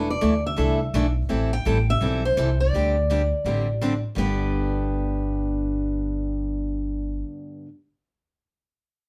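A lively swung 4/4 drives this short cut from a longer jazz manouche piece, where a warm, boxy picked acoustic guitar carries the melody high above a bright, up-front second picked guitar whose finger squeaks show through its accompaniment, while a woody, thumpy pizzicato upright bass on gut strings anchors the low end, all heard from further back in a moderate studio room as the harmony moves from E7sus4 through Am9 and D7sus4 to settle on G at 4.2 seconds, with the accompanying guitar continuing alone until 7.7 seconds.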